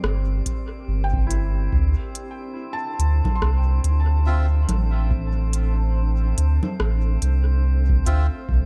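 A round, up-front sine sub bass anchors this deep, spacious ambient dub excerpt alongside an organic drum kit of congas, crisp hi-hat and rim click trailing dub echo. A tape-warm electronic kick joins from 0.5 s, while a blurred granular cloud pad sits in the background and a drifting glassy harmonics texture with chorus hovers alongside it over C9 and D7sus2 chords; soft, felt-muted upright piano arpeggios with tape echo enter at 1.0 s, and reedy, breathy melodica stabs in dub echo arrive at 4.3 s.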